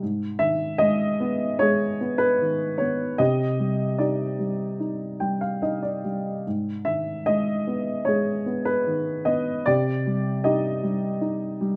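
A dark, woody upright piano plays alone in this melancholic, reflective classical fragment cut from a longer piece: a lyrical solo at 75 BPM in 4/4 with a rubato feel, its mellow, slightly detuned, boxy tone sitting up front under close, detailed microphones and light reverb as it moves between G#m and Cmadd9, adding a brief fill from 4.8 to 6.5 seconds.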